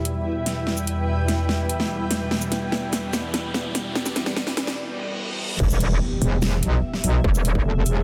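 A bright, metallic FM wobble bass, saturated with overdrive and chorus, slams in at the drop at 5.6 seconds with a distorted, layered electronic kick, and a second wobble bass layer joins at 6.2 seconds in this menacing, aggressive half-time dubstep cut in E minor at 146 BPM. Before that, a build-up rides a filter sweep and a drum fill from the up-front dubstep kit, with its huge snare, hi-hat, shaker and crash. Beneath sit a lush, detuned sawtooth unison pad with phaser and a cloudy, evolving granular pad, both pumping with sidechain, while a riser, reverse cymbal and impact in the background mark the break and drop, all within a dense, heavily limited master with light reverb.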